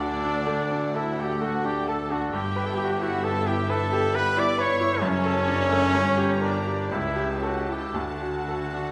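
A bright, brilliant baby grand piano carries the melody up front from the first moment of this lush, lyrical romantic movement for piano and orchestra in D major, unfolding in a slow, rubato 3/4 at around 57-67 BPM, with a very quiet hard-mallet timpani note heard only until 0.9 seconds. Behind it, rich, focused violin sections with vibrato sing the melody and a second line, a very quiet viola section fills the accompaniment, and a warm solo trumpet punctuates with up-front classical stabs while cellos, a smooth double bass section and a warm tuba anchor the bass. The harmony moves from D through G6, D/F#, Gm and A7/C# back to D, all bathed in a wet scoring-stage reverb in this short cut from a longer piece.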